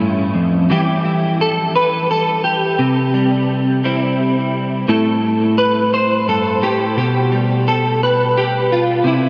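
A clean electric guitar carries this short, melancholic folk fragment on its own, its picked notes sounding warm, compressed and close to the listener. Set in triple metre with a straight feel, the line moves through a brief chord sequence of A, Em, C, A5 and G/B, ranging from F2 up to C5. An ensemble chorus thickens the guitar's tone, while a diffuse ambient delay scatters echoes behind it. The whole mix is soaked in a huge reverb with a 7.3-second tail, lending the intimate playing a dreamy, hazy atmosphere. The piece is cut from a longer work, with the guitar playing throughout from 0.0 to 9.3 seconds.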